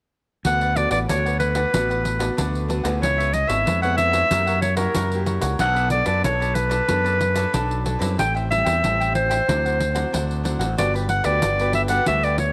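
Lively and sunny, this short excerpt cut from a longer samba and choro piece in D major moves at 93 BPM in a straight 4/4, with a clear, classical-style clarinet carrying the melody up front over crisp, mellow picked cavaquinho, a bright fingerpicked nylon-string guitar in the background, jingly pandeiro played close and dry with soft hands, and a growly, punchy overdriven fingered electric bass, all set in a small room with light reverb as the chords travel from D6 through F#7b9 and Bm9 to Gmaj9.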